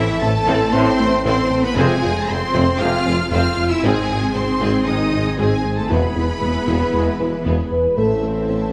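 A hybrid orchestral and electronic film cue opens at once with full strings, synths and low brass in A harmonic minor, moving at 116 BPM in a straight 4/4 with a futuristic, relentless mood. The violin section carries the melody with soft-attack vibrato and expressive portamento, backed by a second violin line, a distant, lush viola section and a silky analog string pad thickened by ensemble chorus. Underneath, a close, focused cello section, a double bass section, a clear vintage-toned tuba and a deep, saturated sub bass anchor the low end, while a smooth synth bass riff and very quiet, nasal pluck arpeggios add electronic motion. At 0.7 seconds a mellow French horn section and a very quiet, roomy trombone section join with sustained chords. The harmony turns through Am, Fm, G# and E before returning to Am at 8.0 seconds, all set in a moderate scoring-stage reverb within this brief cut from a longer piece.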